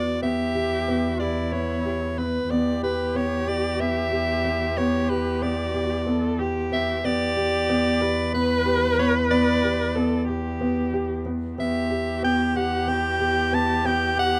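A breathy, bright soprano saxophone carries the melody up front in this restless, urgent piece of contemporary chamber music in 7/8, joined throughout by a bowed viola singing an expressive second line with vibrato and portamento, felt-muted upright piano arpeggios that sound soft and intimate, and a dark, veiled con sordino cello holding the bass, all captured close and dry in a short cut from a longer work.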